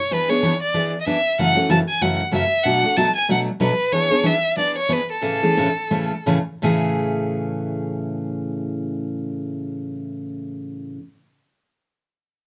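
Close, detailed microphones and light reverb frame this charming, swinging jazz fragment in A major at 161-189 BPM, where a focused, clear bowed violin with vibrato sings the melody up front over a bright, full-bodied picked jumbo steel-string acoustic guitar moving through E7, F#m7, Bm7 and back to E7 before the tempo slows from 3.9 seconds and settles on Amaj7, after which the violin stops at 6.2 seconds and the guitar carries on alone until 11.0 seconds.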